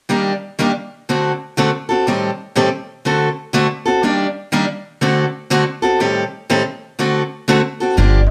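A bright, boxy picked steel-string acoustic guitar with audible finger squeak carries this swinging, virtuosic gypsy-jazz excerpt alone through a repeating Ebmaj7–D7–Am7b5–D7 cycle in a moderate studio reverb, until a woody, thumpy pizzicato upright bass sounds a single up-front note at 8.0 seconds.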